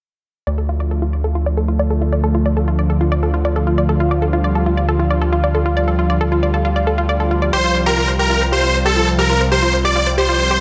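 A straight 4/4 pulse at 136 BPM drives this euphoric, emotional trance piece in D minor, where a gritty, saturated synth bass sits up front beneath a thick, warbling chorused pad holding sustained chords and a punchy, detuned pluck spinning arpeggios with dub echo, both pad and pluck carrying filter sweeps, until a huge, bright supersaw lead with dub echo takes the melody at 7.5 s as the harmony moves from Dm to Csus4, the whole mix sitting in a lush hall reverb.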